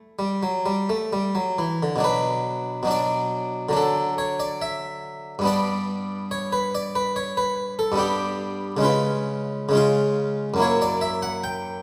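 A solo harpsichord opens this brief, grave excerpt from a baroque-style suite movement in B minor, its plucked, round Flemish-style tone sitting up front on a single set of strings within the reverberant wash of a recital hall. The flowing line moves at an unhurried 62-74 BPM in 4/4 with a rubato feel, ranging from F#2 up to G5. Harmony passes from E minor through B minor, D and G before turning to C#7 at 8.8 seconds and settling on F#7 by 10.6 seconds.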